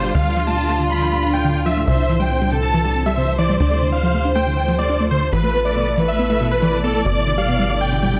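From the first moment of this euphoric, driving uplifting trance excerpt, a huge, bright supersaw lead carries the melody through cassette tape colour and tape echo, joined by a rich chamber violin section with vibrato on a second line, while a shimmering, ethereal pad holds sustained chords under a filter sweep, a lush, detuned pluck plays echoing arpeggios, a tight, nasal sequencer bass sits up front and a barely audible electronic hi-hat stays beneath, set in a dark production with light digital ambience.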